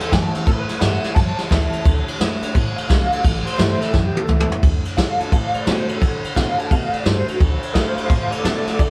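A swung 4/4 pulse at 173 BPM drives this rowdy, retro rockabilly clip in D major, cut from a longer piece, with brushed vintage drums sitting up front, their dark cymbals and punchy kick adding a fill from 3.9 to 4.6 seconds, while a thumpy, gut-strung upright bass plucks underneath. A twangy, slightly broken-up electric guitar through a small old amp carries the melody with tremolo, taking a clean solo until 4.6 seconds, over a full-bodied dreadnought acoustic picking out an accompaniment on woody old strings. The chords move from A to D and back before landing on D as the second section begins, all captured live in one room with light reverb.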